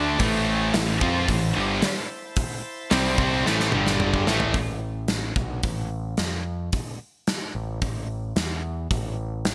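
A straight 4/4 pulse at 110 BPM drives this menacing, aggressive hard rock passage in A minor, cut from a longer piece and carrying a bright 1980s-style digital sheen with light small-room reverb. Up front, a gated 80s drum kit enters at 0.2 seconds with a punchy kick, a medium-tuned snare, hi-hat and toms in an airy stone-room space, and it rolls through a fill before the shift at 4.5 seconds. Until then, two heavy high-gain guitars, one double-tracked, grind out a distorted riff alongside an overdriven semi-hollow guitar with ensemble chorus, all three sitting in the background together with a very quiet, gritty tonewheel organ holding thick sustained chords through a slow rotary speaker. Beneath them, a growling picked electric bass with overdrive gives a dark, round low end and carries on with the drums to 9.5 seconds once the guitars and organ stop. The harmony moves from Am to G5 and back before opening onto Asus2, then drops to unaccompanied rhythm as the bass and drums press on alone.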